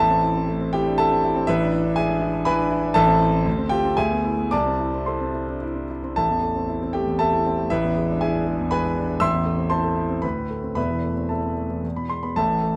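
A solo grand piano sits up front in this stormy, agitated classical study, its intimate, natural tone carrying audible action noise from the instrument's mechanism. The virtuoso writing spans a broad range from E1 to E6 in A minor, with the tuning set at A4 = 441 Hz. In 3/4 time, the pulse moves between 107 and 123 BPM with a pliant rubato feel. The harmony circles around A minor and E7, and a second section begins at 6.2 seconds, passing through D5 and Am/E before settling on E at 11.8 seconds. A moderate large-studio reverb and a dark, warm production frame the 12.8-second passage, which is cut from a longer piece.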